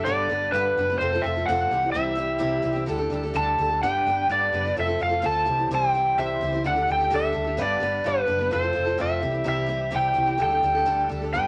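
Folk rock with a heartland lean, this open-road, hopeful excerpt rides a straight 4/4 groove as an overdriven slide guitar, played with fingerpicks and up front, carries the melody high over a G, F, C and Dsus4 progression that cycles three times. Beneath it a boxy parlour steel-string acoustic picks out the accompaniment, a round, dark hollow-body bass anchors the low end, and a reedy tonewheel organ with key click and fast rotary speaker holds sustained chords in the background. All four parts play throughout, set in a moderate studio reverb.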